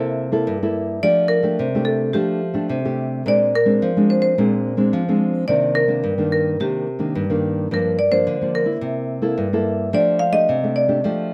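Samba in C minor at 108 BPM, this brief excerpt from a longer piece carries a yearning, nostalgic mood in a straight 4/4 feel. A nylon-string guitar opens alone at 0.0 s, its thumb-plucked classical tone sitting up front and spanning G2 to A4 as it lays down the accompaniment. At 1.0 s a marimba played with hard mallets enters with the melody, its rosewood bars sounding woody, bright and percussive between G4 and F5, close-miked and dry. The harmony moves through rich colours such as C6, F69 and Bb9 before turning darker with Cm9 and Gm7, then returning to C6 and F69. Close, detailed microphones and a moderate studio reverb give the pair an intimate, clear presence, with both instruments holding equal footing until the cut at 11.3 s.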